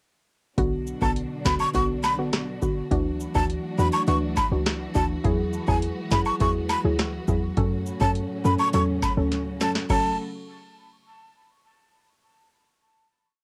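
A booming analog drum machine with a deep kick and crisp snare starts a syncopated dancehall beat at 0.6 s, alongside a punchy, sliding 808-style bass, soft round plucked chords with chorus, and a lush bowed string pad that pumps under sidechain; cabasa and woodblock follow, and at 1.0 s a breathy, close-miked jazz flute brings in a syncopated vibrato hook, until a drum fill leads to a final held chord at 9.9 s in this tough, hypnotic home cassette recording with light reverb.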